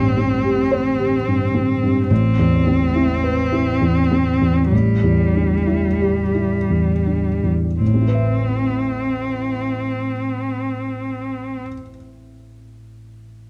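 In a rubato triple metre that slows early on, this melancholic, fragile neoclassical piece for piano and strings, cut from a longer work, places a felt-muted upright piano's dark, intimate accompaniment up front beside a single bowed cello singing a rich, expressive second line with vibrato and portamento until 11.6 seconds, the piano carrying on alone to 13.5 seconds in a dry, close 1970s-style studio sound.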